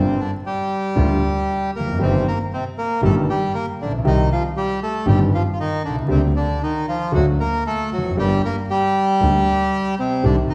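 The rhythm is a rubato tango in 4/4 at 116 BPM, pulling and stretching against the beat in a dramatic, sultry G minor, tuned with A4 at 435 Hz. A reedy bandoneon sits up front and carries the melody between C3 and Bb4 throughout this 10.5-second fragment of a longer piece. Beneath it, a dark baby grand piano supplies mellow, smooth, vintage-toned accompaniment with long sustain, while a single bowed double bass plays a rich, even line with vibrato in the low register. The harmony moves from Gm7 through Eb/G and Cm to Gm/D, then D, resolving on Gm at 8.2 seconds. The ensemble is heard from further back in a large studio with a generous 1.2-second reverb, and vinyl crackle gives the recording an aged surface.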